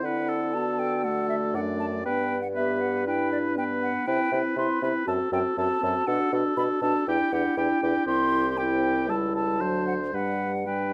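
Cheerful and lively, this quick classical-period movement for wind quintet, cut from a longer piece and played with a rubato feel, sets an airy, hollow concert flute melody with vibrato and crisp attack above a clear, up-front oboe second line, while a dark clarinet and a mellow French horn with a smooth top supply accompaniment and a warm bassoon carries the bass, in a moderate large studio reverb as the harmony moves from D13 through Cmaj7, F#dim and A7/C# to a close on G.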